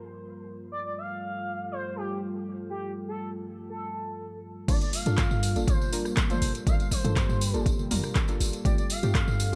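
A punchy, overdriven electronic kick sits up front once the drop lands at 4.7 seconds in this earthy afro house excerpt, joined by a deep, boomy 808-style bass, a layered deep house kit with metallic hats, claps, rim clicks, toms and crash, and a jingly, close tambourine. Before that, a dark, detuned analog pad with a slow attack holds sustained chords under sidechain pumping, and from 0.7 seconds a smooth, expressive sawtooth lead glides between notes with vibrato, lush chorus and dub echo. At the drop, soft, warbling chord stabs with a filter sweep add vintage color through chorus and echo, the whole mix set in a digital ambience.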